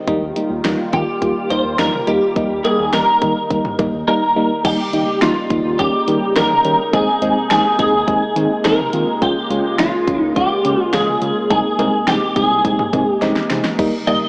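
Synth-pop in Ab major at 105 BPM, this short, nostalgic and bright excerpt moves in a straight 4/4 through chords such as Ebadd9, Eb7, Abadd9/Eb, Db6 and Abadd9/C. A bright, twangy twelve-string electric guitar carries the melody up front, clean and compressed with an ensemble chorus, entering at 0.9 seconds. Beneath it, a warbling FM electric piano with a noise layer plays mellow, decaying accompaniment through a phaser, while a smooth, dark synth bass built from sawtooth and triangle tones holds the low end. A detuned, resonant sawtooth pad with slow attack and filter swells sustains chords in the background, treated with subtle chorus. The electronic pop drum kit, with punchy kick, fat snare, hi-hat, cowbell, toms and crash, sounds re-recorded in a small room and plays a fill at 13.2 seconds, all set in a lush hall reverb with a small-speaker character.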